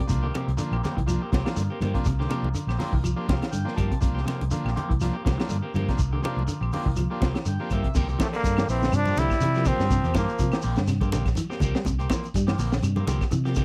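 Afrobeat with a funky, driving feel, cut from a longer piece: a crunchy, saturated breakbeat kit with a high-tuned snare, a round, punchy fingered bass, ringing congas, a grainy shekere and woody claves set a dry, close 1970s-style groove under clean hollow-body guitar arpeggios, twangy phaser-treated guitar stabs at the edge of break-up, and a buzzy combo organ with spring reverb that comps and adds fills until about 8 seconds, before a brilliant trombone melody with light vibrato, shadowed by a raspy tenor saxophone second line, comes up front from 8.2 to 10.6 seconds.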